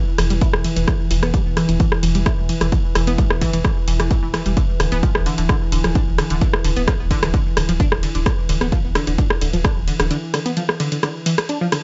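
A straight pulse drives this hypnotic, industrial peak-time techno excerpt: a heavy, up-front electronic kick thumps beneath a tape-warm kit of hi-hats, ride cymbal and rim clicks, with the hats and cymbals pumping against the sidechain. A deep, thick sine sub bass, tube-saturated and low-pass filtered, drops out around 10.1 seconds, and the kick falls away at 9.7 seconds. Above them a tight, nasal, detuned sawtooth riff with a filter pluck, moving notch, chorus and delay rides over an evolving pulse-width drone, all in a close, dark mix with little reverb.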